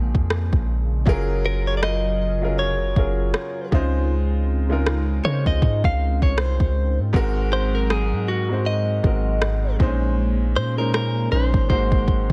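Contemporary R&B at 79 BPM in 4/4 with lightly swung sixteenths, this smooth, tender passage in Db major is cut from a longer piece. A boxy baby grand piano plays accompaniment chords, while a hollow, flute-like pad with a vintage, warbling ensemble chorus sustains softly in the background. Up front, a deep, mellow 808-style bass holds long sine tones with a fast attack that decay, alongside an electronic drum kit whose soft kick and rim click are overdriven. At 1.5 seconds a clean, compressed electric guitar, recorded direct and picked, enters with the melody, its notes trailed by digital delay. The harmony moves from Bbm11 through Gbmaj7, Dbmaj7 and Ab7 before returning to Bbm11, all set in a digital ambience.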